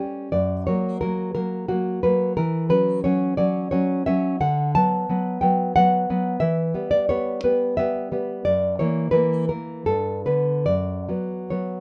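Sunny and tender, this romantic piece for solo classical guitar moves in a gentle three-beat metre with a loose, rubato feel that lets the phrases breathe. The nylon-string guitar is the only voice, playing from the start at 0.0 s through to 11.8 s, reaching from a low F#2 up to A5. Its tone is dark and full-bodied, with a thumb-plucked, deep classical character, and it sits up front in the mix. The harmony drifts from F# through Bm/D and Em6 to F#7, then touches G before settling on F#sus4 near 10.7 s. A light reverb gives the instrument a gentle sense of space in this short section cut from a longer performance.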